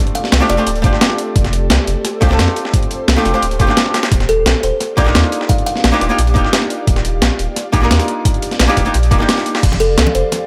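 A dark, clean archtop guitar with dub echo and an ethereal, detuned pad carrying ensemble chorus and 12-bit sampler grit open this uplifting liquid drum and bass excerpt at 174 BPM in F mixolydian, moving from F6 to Ebmaj9 at 4.1 seconds and back. Two gritty, sampler-style breakbeat kits, one overdriven with crash, hats and snare and one tape-toned kit in the background, sit over a deep, full sub bass up front and a thumpy, overdriven electronic kick that enters at 0.8 seconds. A woody, bright kalimba with dub echo plays short melodic phrases, and hard-hand congas join near the end in light reverb.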